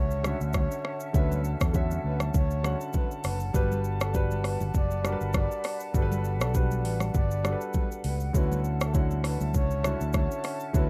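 Romantic and breezy, this short excerpt of afrobeats moves at 100 BPM in D major with a light 16th-note swing, as a soft, breathy flute-like synth lead with chorus, delay and vibrato sings over a warm concert grand piano and sustained chords from a small airy flute group that pumps under sidechain. Underneath, an amped fingered electric bass plays from the start, an up-front electronic afro-pop drum kit with a deep kick, metallic hi-hats, rim click and shaker joins at 0.1 seconds, and very quiet, bright, damped congas enter at 0.2 seconds. The harmony drifts from Dmaj9 to Gmaj7 and back, captured in a dry, rough home-demo sound.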